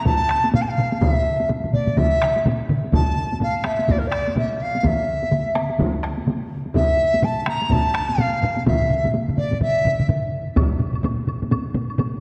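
A dark, reverberant concert-hall sound frames this driving, ceremonial passage of Japanese traditional taiko ensemble music, cut from a longer piece and moving at 126 BPM in 4/4 with a swung sixteenth-note feel. A mellow bamboo dizi carries the melody across a range of Bb4 to Bb5, its pure, buzzing-membrane tone marked by vibrato, a soft attack and an unsteady quality, over several layers of hard-stick taiko, some close and dry, one set in the background and another distant in a large room. The dizi drops out at 10.1 s, and a dry, woody woodblock joins the drums from 10.6 s until 12.1 s.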